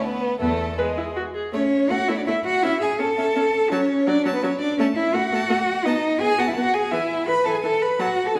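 A focused, up-front cello carries the bass in this spirited, cheerful classical-period string quartet movement in A major, taken quick at 167 BPM in 3/4 with a rubato feel, while a warm violin sings an expressive second line with soft attacks and portamento, the viola adds smooth, even accompaniment from 0.4 s, and the other violin's rich, vibrato-laden melody sits in the background, each part bowed by a single player in a reverberant recital hall, in a passage cut from a longer work.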